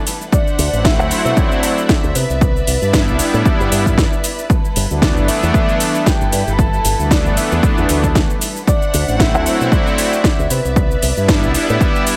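A lightly swung 115 BPM groove in G major drives this sunny, feel-good nu-disco excerpt, where a punchy, overdriven electronic kick sits up front over a house kit of cracking snare, metallic hats and shaker, an envelope-filtered fingered electric bass, a detuned sawtooth analog pad with chorus, dark, woody strings pumping under sidechain, and a round, octave-layered synth lead in the background treated with chorus, phaser and delay, all moving through D9, Cmaj9 and G69 chords in a dry mix.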